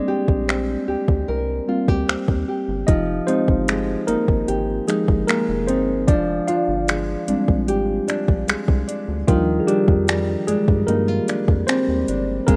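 A dry, rough home-demo mix frames this sensual, longing contemporary R&B excerpt: a worn, slightly out-of-tune tine electric piano leads up front over dark, fingerpicked nylon-string guitar arpeggios moving through Ebmaj7, Fm9, Bb13/F and Ebmaj9, joined at 0.3 seconds by a rubbery, hollow square-wave bass with a plucky filter and an overdriven electronic drum kit of finger snaps, metallic hi-hat and soft kick.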